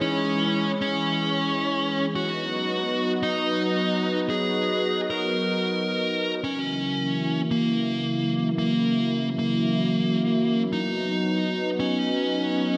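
A dark, smooth electric lead guitar carries the melody from the start, its picked, overdriven tone sitting up front and trailed by a digital delay as it moves between A#3 and A#4. This is an uplifting, romantic synthwave passage in B major at 112 BPM in a straight 4/4, tuned to A4 = 438 Hz and taken from a longer piece. Beneath the guitar, a lush unison pad holds sustained chords throughout, its detuned sawtooth and square-wave layers giving a thick, warbling, vintage body with slow attacks, long release and a chorus shimmer. The harmony moves from C#m to B at 2.2 seconds, then shifts to F#7 at 6.4 seconds, where a filter sweep begins on an analog synth pad before the chords return to B. Everything sits in a wet hall reverb with a 2.3-second decay, framed by a bright 1980s-style digital production.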